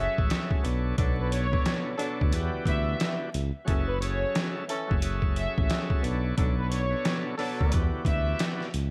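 Tough and reflective, this short boom-bap hip-hop excerpt in F# minor moves at 89 BPM with a 16th-note swing, cycling through minor ninth chords while vinyl crackle hangs over the whole mix. A gritty, pitched-down sampler-style drum kit with a thumpy kick, re-recorded in a large room, sits up front beside a smooth, mellow synth bass, while a bright, shouting tonewheel organ, lightly overdriven through a slow rotary speaker and cassette tape, carries the accompaniment. Above them a distant violin section with a reedy gut-string tone plays the melody through tape echo, and a loose, roomy horn section adds stabs from 1.0 to 7.8 seconds.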